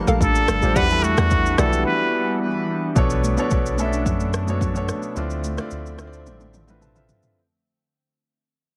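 A breathy, nasal trumpet with a straight mute sits up front from 0.2 to 2.4 seconds, its scooped notes and light vibrato riding tape echo over a deep log drum bass, a hollow, chorused square pluck in the background, and a glassy FM pad pumping against the deep house kit with its punchy kick, rim click, shaker, toms and 12-bit grit. This hypnotic, deep amapiano cut in B minor moves at 109 BPM, with a clear concert grand piano and very quiet, high-tuned congas running throughout, while chords drift from Gm9 and Em9 to Bm9 and Dm9. After a break, a full sine sub bass with octave enters at 3.0 seconds as the piece fades out, closing on drum and piano fills, all heavily compressed into a dry radio sound.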